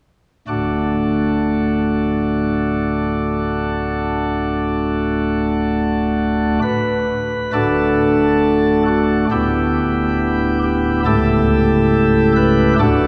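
At 0.5 seconds a solo pipe organ begins on a D major chord, its flute stops light and sparkling, with a baroque voicing and a crisp chiff at the start of each note. This is a serene, majestic, chorale-style classical passage in D major, moving at a stately 68 BPM in a straight 4/4. The organ sits up front in the mix and spans from a deep C#1 to B4, though the listener seems placed further back in a cathedral whose long, wet reverb lingers for about five seconds. Midway the music moves into a new section, and the harmony shifts to Em7 over D at 9.3 seconds, then to A7 over C# at 11.1 seconds. The passage is cut from a longer piece, and the organ is still sounding when it breaks off at 13.1 seconds.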